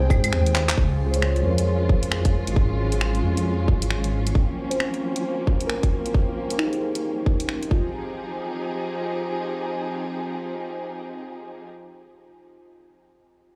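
Nocturnal and wistful, this future garage fragment at 134 BPM in F minor swings on a tight, up-front electronic kick and a layered garage kit of cabasa, claves, finger snaps, handclaps and warm hi-hat, while a deep, detuned saw bass rumbles until 4.3 seconds, lush bowed strings hold chords moving from Abmaj7 to Fm9, muted felt-like synth keys pump under a filter sweep with chorus and delay, and a grainy, flickering texture hovers in the background of a big, bare-room sound.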